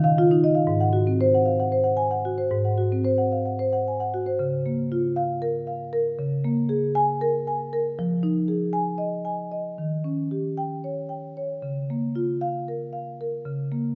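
A generous recital hall reverb with a 1.6-second tail surrounds this recording, and its top end is soft and rounded, falling away above 10.8 kHz. It is a short fragment of a contemporary classical piece for solo marimba, playful and warm in mood, moving in a flexible, rubato 7/8. Played with soft mallets, the rosewood bars sound woody and mellow, sitting up front in the hall and ranging from Ab2 up to Ab5. The opening passage rests on Ebsus2 before settling onto Ab. At 4.4 seconds a new section begins, turning through Db6, Bbm7/Db, Fm7 and Eb7 before returning to Db6 and closing on Bbm/Db as the fragment ends at 13.9 seconds.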